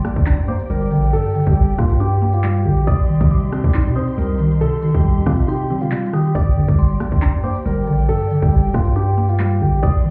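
Muffled as if heard through a club wall, with light reverb, this cold, menacing drill excerpt in G minor moves at a half-time 138 BPM over a Gm, Cm, Gm progression. A very quiet electronic impact opens the clip and ends at 1.1 s, while the up-front drum kit brings a hard-clipped kick, crisp hi-hats, handclaps and rim clicks, and a long, deep, sine-like 808 bass sits beside it. A dark, mellow grand piano carries the melody through delay, supported by a woody, round FM synth pluck, a bowed string section with vibrato and portamento, and a glassy, crystalline synth bell with chorus and phaser tucked in the background.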